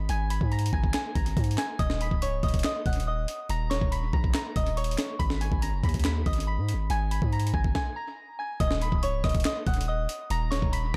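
A deep, sustained sine 808-style bass and a soft, pure, warbling vintage FM synth bell melody colored by chorus, a low-pass filter and dub echo open this melancholic half-time hip hop and trap excerpt, joined a split second later by gritty, compressed breakbeat sampler-style drums whose thumpy kick, high-tuned snare, handclaps, hi-hat and rim click hit hard up front, all in a dry, echo-heavy mix, with a stop from 7.8 to 8.6 seconds before a chordless closing section.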